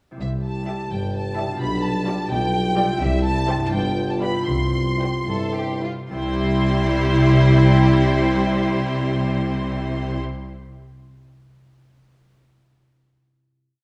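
Set in a moderate concert hall, this whole, quirky and playful cinematic cue in C major moves in a straight 6/8 at 71-86 BPM, with a rich, lush violin section carrying the melody over a clear second violin line, smooth violas and a warm cello section mixing pizzicato with sustained notes, a double bass section and a mellow tuba doubling the bass, a dark, distant French horn section holding chords in the background and a ringing, fingerpicked concert harp rolling its chords, the tempo slowing from 2.3 seconds until a final chord arrives at 6.1 seconds.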